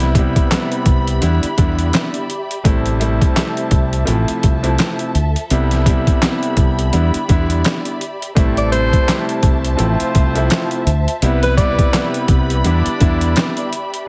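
Gritty, pitched-down boom-bap drums with a thumpy kick and handclaps sit up front beside a round, punchy fingered electric bass in this moody, reflective hip-hop excerpt with a swung feel. A vintage-toned grand piano and a lush, woody string section hold filtered chords underneath, all wrapped in a heavily compressed radio sound with vinyl crackle and light reverb. At 8.4 seconds a clear horn section adds background stabs with octave doubling and delay, and a breathy tenor saxophone plays a short jazz-style solo melody with subtone and scooped notes from 8.6 to 12.1 seconds.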